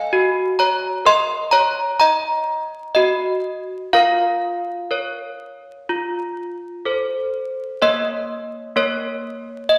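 Wintry and solemn, this short classical tune for handbells moves at a slow 63 BPM in 4/4 with a straight feel, set in Bb minor and tuned to A4 = 444 Hz. Desk bells play alone throughout, spanning Bb3 to C6, their tone clear, ringing and bright with a clanky edge and a slightly out-of-tune quality that sits up front in the mix. The harmony moves from Ebm/Gb through Bbm/F to F, then settles on Bbm as a brief new section begins at 7.8 seconds. A wet scoring-stage reverb gives the bells a lingering space, while a layer of vinyl crackle adds an aged texture. Cut from a longer piece, the recording lasts under ten seconds.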